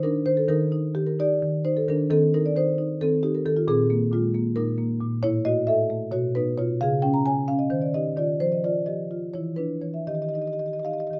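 In a loose, rubato 7/8, this playful contemporary classical excerpt features a solo marimba struck with soft mallets, its woody, round rosewood tone sitting up front in a moderate studio reverb as it drifts through colourful harmonies from Ebmaj7 and Bb9sus4 to Dbm7/Fb before settling on Ebadd9 near 10.1 seconds.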